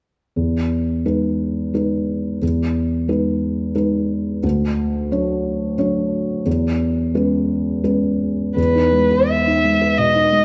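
A moderate scoring-stage reverb surrounds this intimate, tender neoclassical fragment in E major, where a felt-muted upright piano, mellow and close with thick felt and audible action noise, plays rubato accompaniment in 3/4 at 88 BPM through chords such as Emaj7 and Dmaj7, and a single woody, sul tasto violin with vibrato joins it up front at 8.6 s to carry the melody to the cut at 10.4 s.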